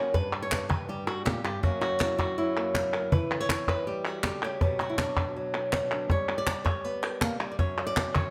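Fiery and dramatic, this short flamenco passage, cut from a longer piece, moves at a brisk 161 BPM in a straight 4/4. A fingerpicked flamenco guitar carries the melody from the first instant, its fresh strings sounding bright with a slightly boxy body, ranging from F#2 up to D5. A woody cajon with faint snares joins at 0.1 seconds, and crisp palmas hand claps follow at 0.3 seconds, both placed close and up front beside the guitar. The harmony moves through G, F#, Em and Bm, returns to G, and lands on an F#5 near the end. A moderate large studio reverb gives the acoustic trio a sense of space while keeping the performance immediate and intense.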